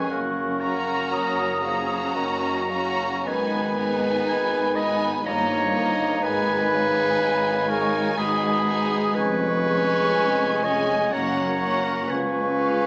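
Lyrical and tender, this slow romantic orchestral movement in F# major unfolds in 3/4 at 51-64 BPM with a rubato feel, as a lush symphonic violin section carries the melody with vibrato and a soft attack. A close, clear clarinet, a distant oboe, an airy, hollow flute section and a smooth chamber violin section add second lines, while a bassoon and a focused viola section fill the accompaniment, a mellow French horn section holds sustained chords, and a very quiet, ringing concert harp plays arpeggios. A dark, woody cello section and a double bass section anchor the bass from 0.1 seconds, and the harmony moves from F# through G#m and C#7/E# back to F#, heard through a wet concert hall reverb with a small-speaker sound in a passage cut from a longer piece.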